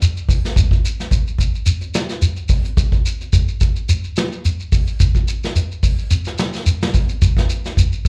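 A vintage brush drum kit and a shekere start together, laying down a driving, funky afrobeat groove at 108 BPM in 4/4 with a light swing on the sixteenths. The kit is played with brushes across hi-hat, snare and kick, and its sound is dark and smooth, with a medium-tuned snare, a punchy kick and a rolled-off top, sitting up front in a small acoustic room. The shekere adds a grainy, mellow texture, heard close and dry and also placed up front, a little below the drums in level. Both parts play through the whole 8.1-second clip, which is cut from a longer piece. The performance comes across as a live gig heard through the venue's PA, with a light club reverb around it.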